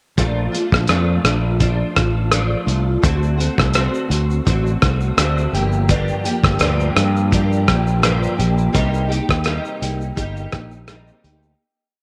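Dreamy and nostalgic, this short indie and bedroom pop piece sits at 84 BPM in 4/4 with a light swing on the sixteenths, set in Bb major. A picked steel-string acoustic guitar with a jumbo, full-bodied tone strums eighths in barre chord shapes, its sound shimmering through ensemble chorus and vibrato. Beneath it, a punchy fretless electric bass plays a rounded, melodic line with slides, while a cloth-damped, thuddy drum kit of hi-hat, tight kick, rim click and shaker keeps a soft rhythm-box pattern with a muffled, gritty, saturated character and a rolled-off top. All three parts sit up front in a moderate spring reverb, and the chords move from Bbmaj7 through D7 and Gm7 to Cm7 at 8.7 seconds, where the fade-out begins and carries the piece to its close at 11.6 seconds.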